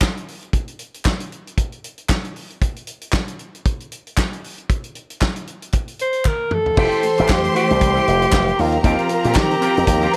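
A breathy alto saxophone carries the melody up front from 6.0 seconds, its smooth top and jazz-style vibrato lending a joyful, glamorous shine to this brief disco passage cut from a longer piece. The passage opens on a soul drum kit with dark cymbals, a tight kick and a medium-tuned snare, joined by crisp group handclaps that sit distant in the background. A drum fill at 6.3 seconds leads into the fuller second section at 6.8 seconds, where a punchy, bright slap bass with an envelope filter enters up front. Alongside it come a rich violin section playing a second line, a clean picked electric guitar with a scooped envelope-filter tone, and a lush, focused string section holding sustained chords in the background. The harmony moves from Fmaj9 to Eb69, all set in a small room ambience with a natural, swung sixteenth-note feel.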